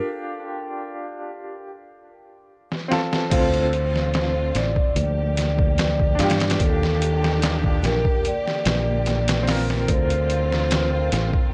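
A woody, slightly detuned upright piano opens this cinematic, hypnotic trip hop passage alone, shimmering with tremolo and tape echo, until a gritty, pitched-down sampler drum kit bursts in with a fill at 2.7 seconds, its thumpy kick and overdriven snare sitting up front in a small room. At 3.3 seconds a growly, punchy fingered bass, a bowed string section with soft attack and vibrato roughened by 12-bit sampler grit, and a mellow soft-mallet vibraphone melody carrying tape echo all enter over minor-leaning seventh chords. The whole recording is dry and worn, drifting with the warbly pitch of old cassette tape.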